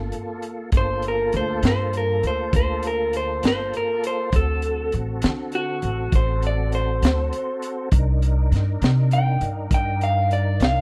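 This dry, close recording has a 1970s studio feel, with the drums, bass and guitar all sitting up front. It is a mournful, soulful slow blues in 12/8, cut from a longer piece, moving from Gm9 to D7 and then to Cm9. A crunchy breakbeat kit gives the groove a gritty, saturated edge, with a punchy kick, a high-tuned snare, hi-hat and a rolled-off top. Beneath it, a woody upright bass is plucked on steel strings and stays dark and low. At 0.8 seconds an electric guitar through a small old amp takes the melody in a solo, its tone slightly broken-up, compressed and lo-fi, bathed in spring reverb. Behind everything, a tonewheel organ holds clear, warm sustained chords, shimmering with chorus vibrato and a slow rotary speaker.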